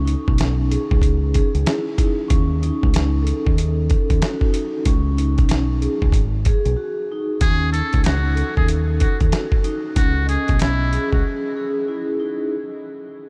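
Soft-mallet vibraphone, mellow and ringing with a slow motor vibrato and a cassette-tape tint, opens this gritty, tough boom-bap hip-hop excerpt in C# minor at 94 BPM with a swung 16th feel, joined at once by a dark, round fingered dub bass and a compressed, thumpy sampler-style kit of kick, snare and hi-hat, before a buzzy, breathy metal-muted trumpet steps in at 7.4 seconds for a jazz-style solo trailed by diffuse ambient delay, all set in a light small-room reverb.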